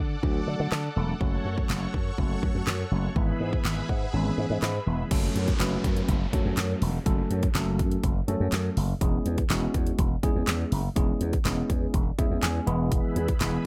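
A growly slap bass run through an envelope filter anchors this bittersweet, energetic dance-pop excerpt in F# minor at 123 BPM, pumping alongside a punchy, layered electronic drum kit with a fat snare, bright hats, handclaps and crash, while a worn, slightly out-of-tune tine electric piano heard through a combo amp adds fills, a soft, detuned sawtooth supersaw swell pumps beneath the opening and returns briefly at 12.9 seconds, and a downlifter enters at 5.1 seconds, all set in a dry mix.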